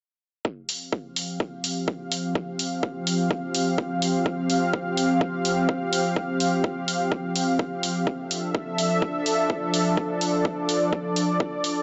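Festival progressive house in F major at 126 BPM, uplifting and triumphant, where a punchy, up-front, high-pass-filtered electronic kick and a layered electronic hi-hat drive a lush, thick detuned sawtooth unison pad with chorus and sidechain pumping, its slow-attack chords moving from Fsus2 to Dmadd9 at 8.1 seconds, all within light reverb and a top end that stops at 7.9 kHz in this short cut from a longer piece.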